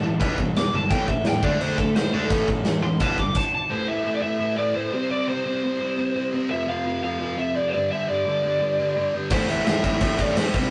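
Punk rock, angry and raw: a dark, overdriven lead guitar solos over a sludgy up-front riff guitar, with a bright tight distorted guitar, growly fuzz bass and a big punchy drum kit crashing in for the opening 3.4 seconds, dropping away while the lead and sludgy guitar carry on, then returning at 9.3 seconds in a rough rehearsal-room sound.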